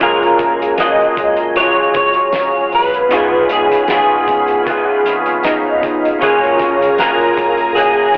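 A laid-back, sunny bedroom-pop excerpt with a gentle swing, where an up-front, slightly broken-up electric guitar carries the melody over a darker second guitar with warbly pitch drift, round chorused analog keys, a swirling phased pad in the background, a foam-muted picked bass, a cloth-damped thuddy drum kit with a fat snare and tight kick, and a very quiet jingly tambourine entering at 0.8 seconds, all wrapped in a lo-fi cassette haze with small-room ambience and a telephone-like tone as the chords move from F#maj9 to C#7 and back.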